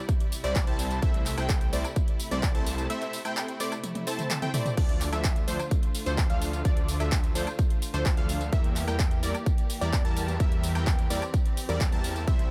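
Festival progressive house at 128 BPM in a straight 4/4, this short cut from a longer track feels powerful and euphoric, with a dry, close sound. An up-front, punchy electronic kick anchors the groove, joined by a layered big-room kit of crash, handclaps, metallic hi-hats, tambourine, toms and woodblock. The kick drops out from 2.9 to 4.8 seconds while a drum fill runs from 3.8 seconds, before the harmony moves from C to Dm at 4.8 seconds and on to Edim at 8.5 seconds. A thick, saturated detuned saw bass with chorus and a sawtooth supersaw stab riff with delay both pump against the kick. Above them, a catchy plucky unison lead spins arpeggios with subtle chorus, delay and vibrato. Behind it all, a smooth symphonic string section bowed in the background holds sustained chords that also pump with the sidechain.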